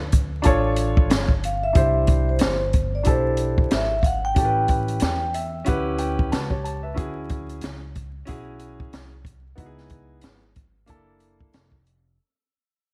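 Mellow and nocturnal, this short jazz-hop cut from a longer hip hop piece moves at 92 BPM in 4/4, with a lazy swing on the sixteenths and a fade running through its whole length. A woody pizzicato upright bass with steel strings anchors the low end, while an acoustic jazz kit sits up front with a high-tuned snare, a boomy kick and hi-hat, heard in a studio room. A dark, smooth baby grand with a vintage character plays through lush extended chords such as Cmaj7, A9 and Dmaj9#11, and adds a fill from around 5.0 seconds. The melody comes from a vibraphone played with soft mallets, metallic and ringing with a slow motor vibrato, placed forward in the mids from 1.5 to 5.5 seconds. A small room ambience and a layer of vinyl crackle give the whole track a dusty, late-night feel.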